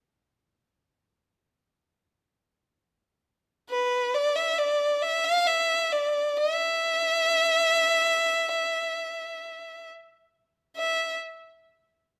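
A rich, smooth, even solo violin, bowed by one player with vibrato and heard close and up front, sings a longing, soulful Arabic line in free time from 3.7 to 11.2 seconds, its microtonal inflections ringing in a moderate recital-hall reverb in this short cut from a longer piece.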